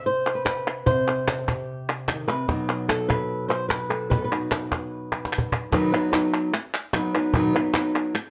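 Flamenco with a passionate, mournful mood, heard as a short passage from a longer piece in which a fingerpicked acoustic flamenco guitar carries the melody, its finger squeaks caught by close, detailed microphones. Crisp palmas hand claps and a snappy cajon with snares sit up front beside the guitar. A fill at 5.1 seconds leads into a new section at 5.7 seconds, all in a lightly reverberant space.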